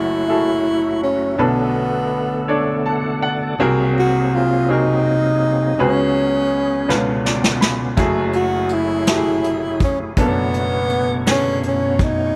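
Slow gospel in 6/8 at 55 beats per minute, this short excerpt from a longer piece carries a solemn, fervent mood over a chord progression that opens on F#m9 and returns to it at 8.0 seconds. A breathy, close-miked tenor saxophone sings the melody up front in a mellow jazz style with vibrato, staying within a narrow range. A bright baby grand piano accompanies with a brilliant, short-sustained tone, adding fills between 2.5 and 3.6 seconds and again from 6.9 seconds. Beneath them a reedy tonewheel organ holds sustained chords through a fast rotary speaker and chorus vibrato, its key click audible, and it joins the piano with a fill in that early window. A vintage brush drum kit enters at 6.9 seconds with a fill, bringing a punchy kick, a medium-tuned snare and hi-hat with a rolled-off top from a small room. Light reverb surrounds the ensemble.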